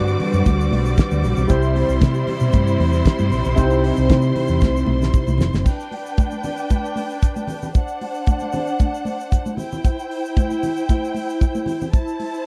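This dry, close 1970s-style studio recording carries a celebratory, danceable disco groove, cut from a longer piece, and is driven by a damped drum kit with a fat snare and tight kick sitting up front, bright, high-tuned congas, and a grainy egg shaker tucked in the background. A round hollow-body fingered bass, a barky, lightly overdriven tine electric piano with analog chorus, and a clear, smooth-topped string section holding sustained chords drop out by 5.7 s, as a drum fill running from 4.6 s wraps up. Throughout, a distant, woody string section plays a lush, vibrato-rich second line.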